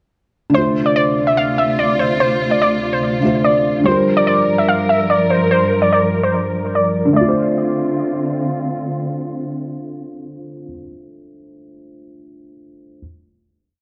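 An echo-heavy, low-passed haze hangs over this eerie, menacing half-time trap piece in D minor at 145 BPM, where a warbly, dusty, nasal pluck loops an up-front melody through chorus and analog delay until 8.4 seconds, a felt-muted upright piano with audible action noise holds open-voiced chords until 13.0 seconds, and a dark studio string section sustains an expressive bowed pad with vibrato and portamento, moving from Dm7 to Gm7 and back to a final Dm7 chord at 7.2 seconds.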